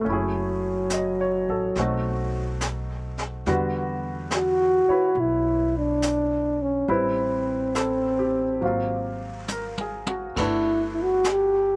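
Swung eighths carry this romantic, tender jazz ballad fragment, where a mellow, up-front trombone with light vibrato sings the melody over a clear baby grand piano, both touched with slapback echo, while a woody pizzicato upright bass and a brushed kit with dark cymbals, a high-tuned snare and a boomy kick play beneath, the drums adding a fill at 9.5 seconds as the chords move from F#m9 to G69 in a dry, open-air sound.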